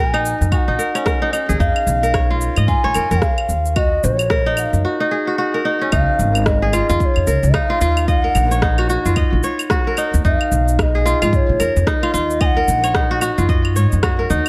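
This excerpt of organic downtempo opens with a bright, fingerpicked kora playing ringing arpeggios alongside a woody, gut-strung upright bass plucked pizzicato, its dark thump pulsing with sidechain pumping. A bass bansuri carries the melody from the first moment, its airy bamboo tone held straight and tongued, close-miked and expressive, trailing a tape echo that also colors the crisp, up-front kora. Overdriven electronic claves, cabasa and rim click enter at 0.1 seconds, and a deep, layered electronic kick joins at 0.5 seconds, setting a swung 111 BPM groove in 4/4. The mood is warm and mystical, centered on Eb minor with harmony moving between Ebm7 and Fm7b5 before a turn to Db at 5.9 seconds opens a second passage. The bansuri falls away at 13.2 seconds, leaving the kora and rhythm parts in a light reverb and studio ambience.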